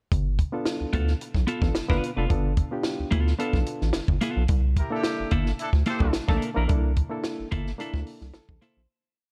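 A syncopated funk groove at 109 BPM, with ghost notes from a compact, dry cocktail drum kit and a rubbery, bouncy square bass riff anchored on the downbeat, carries this hypnotic bridge-like piece over G9 and C13 chords, while clipped clean guitar chords and barky, lightly overdriven reed electric piano stabs with spring reverb and tape echo fill the cassette-tinged room, a distant horn section adds short riffs from 4.8 to 6.1 seconds, and the piano slips in a final fill as everything fades from 6.7 seconds.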